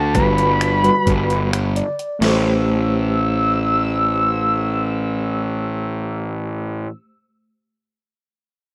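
A growly, overdriven fuzz bass sits up front in this driving, intricate progressive instrumental in 9/8 at 261 BPM in eighths, under a shimmering, chorused pulse-width lead melody and a clean tine electric piano with medium tremolo that plays a fill from 1.5 to 2.2 seconds, while a gritty, thumpy sampler-style drum kit with finger snaps plays only until 2.3 seconds, moving from Gmaj7 to Am7 in A dorian in a rough home-demo mix with light digital ambience, cut from a longer piece.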